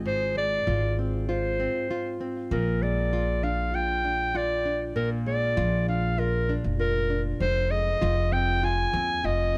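A light reverb gives this delicate, intimate folktronica piece, cut from a longer work, its soft space at 98 BPM, where a dark, fingerpicked nylon-string guitar plays classical arpeggios through tape echo, finger squeak and all, over a woody, thumpy pizzicato upright bass, while an up-front clarinet with a soft attack and smooth top carries the classical-style solo melody, also through tape echo, as the chords move from Ab6 to Bb7 at 2.5 seconds and Fm7 at 7.4 seconds.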